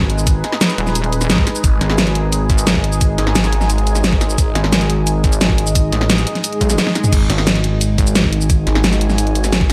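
Futuristic and dark, this short excerpt of technical drum and bass in G# minor runs at 175 BPM, with a deep, moody ambient pad holding sustained chords under a heavy, pulsing pluck wobble bass, a knocking electronic kick and an up-front drum kit with a huge snare, bright hats, shaker, toms and crash, while a swirling, thick detuned saw bass with phaser and overdrive enters at 1.3 s and returns at 7.1 s, just after a background swell and a drum fill begin at 6.6 s and 6.8 s.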